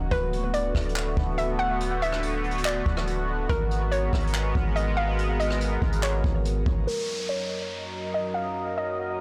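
A blown-out, overdriven small-room sound frames this floating, dreamy atmospheric cloud-rap excerpt at 142 BPM in a half-time feel in F# major, where a bright, detuned sawtooth pad with chorus, sidechain pumping and a low-pass filter sustains D6 and G#m9 chords over a deep sine 808 bass. A hollow, bouncy square-wave pluck melody drifts through chorus and tape echo, and a jazz brush kit adds a boomy kick, hi-hat, rim clicks, handclaps and a softly clipped snare until bass and drums drop out around 6.9 seconds, when an electronic downlifter and a filter sweep carry the pad and pluck onto an F#6 chord.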